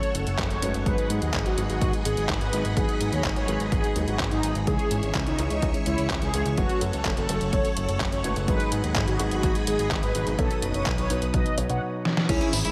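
Italo disco at 126 BPM with a danceable, bittersweet mood, where a round, dark synth brass melody with chorus and digital delay rides over lush, bright string-machine chords, deep piano stabs, a fat sawtooth bass entering at 0.1 s, a dry, punchy overdriven electronic kick, and a detuned 8-bit drum machine of gated-reverb snare, handclaps, hi-hat, tambourine and crash that plays a fill at 12.1 s before a slightly broken-up electric guitar arpeggio with lush chorus arrives at 12.3 s, all moving through F#m, G#m7, C#m and B in light digital ambience.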